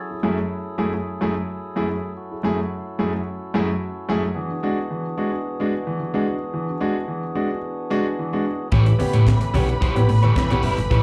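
Heard through a club PA with light reverb, this sultry, glamorous disco excerpt at 110 BPM in F# minor opens on a fat, lightly overdriven percussive tonewheel organ holding sustained chords beside an intimate concert grand piano, up front with audible action noise and a slapback echo, moving from F#m9 to E9. At 8.7 seconds the full band arrives on A7: a tight funk kit with a high-tuned snare, handclaps, hi-hat and kick, a round, amped hollow-body bass sitting forward, a slightly broken-up picked electric guitar, and a dark, woody string section playing a lush bowed second line with vibrato. Very quiet, low-tuned congas with soft hands slip in at 8.9 seconds.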